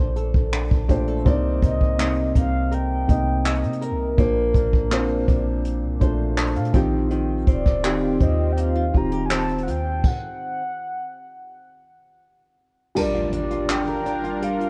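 This moody, late-night contemporary R&B fragment opens on a soft, thick-felt upright piano, a vintage horn-like synth lead with chorus, vibrato and digital delay carrying the melody, fingerpicked flamenco guitar arpeggios with their own digital delay, and a deep, clean 808-style bass. A jazz brush kit with dark cymbals, kick, hi-hat, rim clicks, finger snaps and handclaps joins almost at once. At 7.8 seconds a lush, detuned unison pad with sidechain pumping settles in the background beside a barely audible round pluck, the bass stops at 10.0 seconds, and an electronic impact lands at 13.0 seconds as the kick is muted, all within a small room ambience that carries a worn cassette-tape pitch drift.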